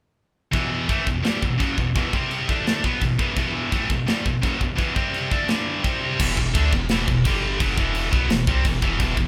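A straight 4/4 pulse at 170 BPM powers this epic, aggressive heavy metal excerpt in E minor, where a scooped, high-gain electric guitar, double-tracked and up front, churns out a distorted picked riff over chords moving from Em through C5 and D5, while a tight acoustic drum kit with bright cymbals, a medium-tuned snare and china and crash accents sounds polished in an airy, big room. At 6.2 seconds the riff shifts onto E5 and G5 power chords and a pure sine sub bass joins, adding a deep, smooth, dark foundation. Light reverb gives the sense of a band playing live together in one room.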